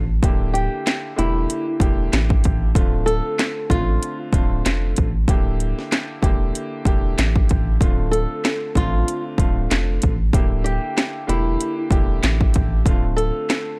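Boom-bap hip-hop at 95 BPM with a dark, gritty mood, built on a swung 16th-note feel over Gm69/D and Dm7 chords in this cut from a longer piece. A punchy, up-front house drum kit of cracking snare, handclaps, metallic hats and kick sits over a deep, round sub bass, while a smooth, vintage grand piano with long sustain carries the accompaniment through cassette-tape coloring and filtering. A fingerpicked acoustic flamenco guitar plays the filtered melody from 0.5 s, pauses at 4.2 s and returns at 8.1 s, all within a dry, gritty hardware sound and a small room ambience.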